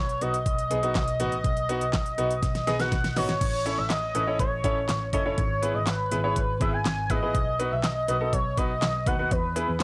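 A bold, retro octave-doubled sawtooth lead with chorus, vibrato and tape echo opens this nostalgic, wistful synth-pop fragment at 122 BPM, quickly joined by an up-front electronic drum kit with knocking kick, fat snare, crisp hats, handclaps and crash cymbal, a clear, polished concert grand piano and a dark, intimate bowed double bass with light vibrato, while a drum fill from 2.4 to 3.4 seconds leads into a second section whose chords move from A through E/G# back to B, the whole captured in a dry, gritty hardware recording with light reverb.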